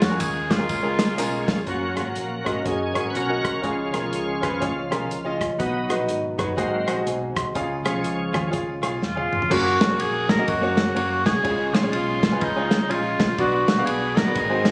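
A mellow cor anglais with tape echo opens this jubilant, uptempo gospel excerpt at 123 BPM in F# major, sounding from the first beat together with an intimate baby grand piano, a bright, shouting tonewheel organ on a slow rotary speaker, a round hollow-body electric bass, a dark soul drum kit, and brief tambourine and handclaps that stop at 1.6 s. From 1.7 s the lightly overdriven organ takes a solo while a very quiet, clear French horn section holds chords beneath it. The cor anglais returns with light vibrato at 9.0 s alongside a drum fill, and the swung feel and roomy echo-chamber reverb give this phone-in-the-room recording a soulful club atmosphere.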